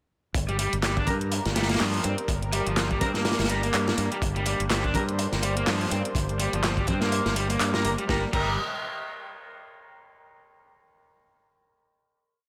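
A swung 124 BPM breakbeat in 4/4 drives this short, rough-edged piece in G minor pentatonic. Up front sits a crunchy, looped acoustic break of tight kick, medium-tuned snare, hi-hat and dark crash cymbal, edited and saturated with a rolled-off top. Layered over it, an overdriven electronic house kit, re-recorded in a large room, adds closed hi-hat and handclaps. A fingered electric bass plays a dotted-rhythm line from G1 to G2 with tube saturation, while a raw garage guitar repeats a 32-step picked riff, overdriven and thrown into dub echo. From the start, a lush, detuned sawtooth-and-square pad holds sustained chords in the background through chorus, phaser and sidechain pumping, and from 1.1 seconds a mellow, distant horn section adds sparse, closely voiced chord stabs with light vibrato, vintage 12-bit sampler grit and echo. The drop runs to 8.1 seconds before a final chord carries the piece to 10.0 seconds in a small, lightly reverberant room.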